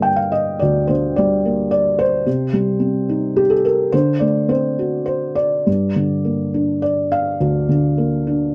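A felt-muted upright piano plays alone and up front through this brief fragment of a bittersweet, moody classical solo piece in G minor, its lyrical line moving in a rubato 3/4 around 106 BPM over a Gm, Cm, D7 and back to Gm progression, with the thick felt giving a soft, intimate tone, the action noise clearly audible and a light reverb framing the dark production.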